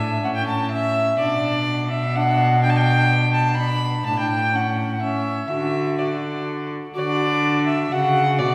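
A church-like concert hall with a long, wet reverb of 1.9 seconds surrounds this festive, stately Renaissance-style consort dance, cut from a longer piece. It moves in a straight 3/4 at 125 BPM in D major, tuned to A4 = 442 Hz, and its opening phrase returns at 7.0 s. A single bowed violin, up front with light vibrato, carries the melody between D5 and B5. The violin and a single bowed cello share a reedy, gut-string period tone, and the cello lays down a rich bass line, also up front. Between them, a tenor recorder plays a second line with a pure, straight, woody tone, tongued notes with a touch of chiff, lifted highs and an expressive touch. The harmony moves from A through B minor and Asus4 before settling on D.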